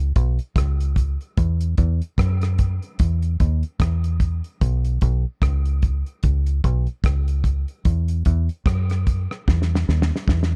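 A deep, round electric bass sits up front, foam-muted and punchy, holding low between B1 and F#2 in B major through this hazy, spacious dub reggae excerpt at 74 BPM with a swung sixteenth-note feel. A damped 70s acoustic drum kit joins at 0.2 s, dry and up front, with hi-hat, tight kick, rim click and a medium-tuned snare under a rolled-off top, closing on a drum fill from 9.5 s. The production is dark and warm, with little reverb.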